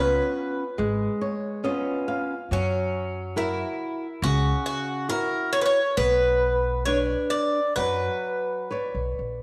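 A bright, metallic Irish bouzouki carries the melody on picked double strings in this longing, passionate fado-style ballad at 69 BPM in B harmonic minor, played with a rubato feel over fingerpicked flamenco guitar with fresh strings and a woody, dark pizzicato upright bass, all three up front in a small room with a wet echo chamber reverb, while a nylon-string guitar fill enters from 0.8 to 2.5 seconds and the harmony moves from C#7 to F#7 before settling on Bmadd9 in this short cut from a longer piece.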